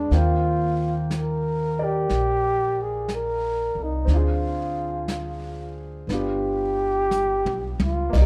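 A gently swung 4/4 pulse sets the unhurried pace of this intimate, late-night jazz ballad, cut from a longer piece. A breathy flugelhorn carries the melody up front, its soft attack, scooped notes and light vibrato giving it a whispered, vintage character. An upright piano with a woody, long-sustaining tone provides the accompaniment beneath it, while a thumpy pizzicato upright bass sits prominently in the low register. A brushed drum kit enters at 0.1 seconds with smooth, dark cymbals, a punchy kick and a rolled-off top, and it plays a fill from 7.1 to 8.1 seconds. Light reverb and a dark, warm production keep the whole passage close and hushed.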